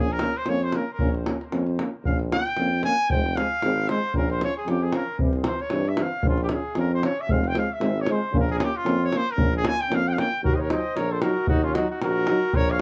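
A roomy, distant trumpet carries the melody up front with a touch of tape echo over a clear, lightly vibrato-laden tuba bass, while euphonium and trombone hold vibrato-rich accompaniment in the background, and a tight, band-limited davul drives the beat from 0.1 seconds. This fiery, restless Balkan brass band piece moves at 114 BPM in a swung 2/4, set in Bb dorian sharp4, with the trumpet soloing until 10.4 seconds over chords circling Bbm, Fm and C. At that point the harmony shifts to Ebm and a warm flugelhorn enters with a second line, joining the band in a small, moderately reverberant room through the end of this excerpt.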